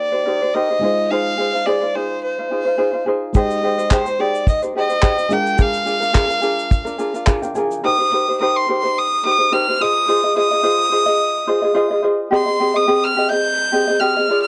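This tender, reflective acoustic pop piece opens with a bowed solo violin carrying the melody, earthy and biting with light vibrato and a smooth top, over a mellow thumb-plucked ukulele and a soft, felt-muted upright piano whose thick felt, short sustain and audible action noise give it an intimate, dark color. The tempo sits at 107 BPM in 4/4 with a gentle 16th-note swing, and the harmony moves through Cm7, Fm7, Abmaj7 and Bb7, tuned slightly low to A4 = 436 Hz. At 3.3 seconds a dry, cloth-damped drum kit arrives up front with a tight kick and handclaps, its rolled-off top keeping it round, while a grainy tube shaker sits bright but far in the background. The piano plays a short fill at 7.0 seconds and drops out by 7.9 seconds, leaving violin and ukulele to carry the second section through Cm7, Fm7 and Abmaj7 until the cut. Light reverb and the worn, warbling pitch drift of old cassette tape lend the whole passage a slightly unsteady haze.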